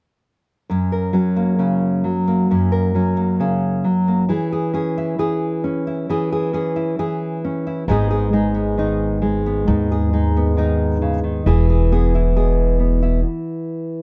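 A fingerpicked nylon-string guitar opens at 0.7 seconds, its fresh strings lending a warm, deep, classical tone, with an occasional finger squeak audible as the guitar sits up front. This short folk passage, cut from a longer piece, moves at an unhurried 67 BPM in a straight 4/4 and has a pastoral, gently warm mood in F# mixolydian. The guitar carries the accompaniment through a progression of F#, C#m/E, G#m and E. At 7.9 seconds a pizzicato upright bass enters underneath, adding a woody, growly low end on steel strings. The whole passage comes to a stop at 13.3 seconds. Light reverb and a dark, warm production shape the sound.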